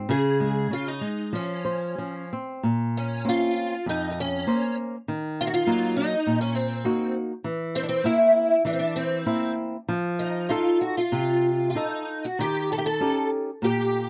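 A bright, boxy twelve-string acoustic guitar carries the melody up front, its picked, octave-doubled lines shimmering with an ensemble chorus over a dark, fingerpicked flamenco guitar accompaniment. This longing, passionate fado fragment moves in a rubato 4/4 at roughly 89-102 BPM in Bb harmonic minor, shifting into a new section at 2.6 s as the harmony passes through Bbmadd9, Ebm, C7/E, F7 and Eb7. The sound is a dry, close 1970s-style studio recording with light reverb.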